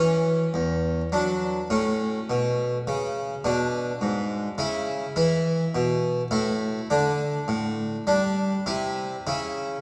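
In a rubato triple metre, this serene, dance-like baroque-style suite movement for solo harpsichord, a 9.8-second cut from a longer piece, places the full, plucked, close-miked French-style instrument with its two sets of strings up front in the low and middle register, wrapped in a long church reverb.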